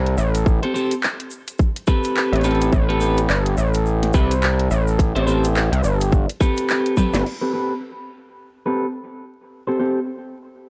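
Crackling vinyl and light reverb frame this swaggering, gritty glitch hop cut at 106 BPM in A minor with a swung sixteenth feel, where a nasal, saturated sawtooth synth bass and a tight, overdriven electronic kick sit up front beside a layered kit of cracking snare, bright hats, handclaps, toms and crash, a grainy egg shaker hangs in the background, and a slightly broken-up picked electric guitar plays pumping, filtered stabs with tape echo over an Am9 chord, carrying on past the drum fill at 7.0 seconds until 10.0 seconds.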